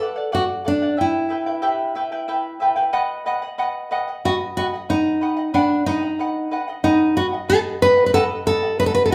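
Andean folk in a straight 6/8, this short cut from a longer piece has an earthy, festive mood. A nylon-string guitar carries the melody up front, its fingerpicked tone full-bodied and deep in a classical manner. Beside it, a charango plays accompaniment in a higher register, fingerpicked on double strings with a bright, shimmering edge from some octave-doubled courses. The harmony moves from D to E minor, then shifts to B as a new section begins at 2.9 seconds and runs to the end at 9.1 seconds. Both players sound as if gathered live in one large studio room, with a generous reverb surrounding the pair.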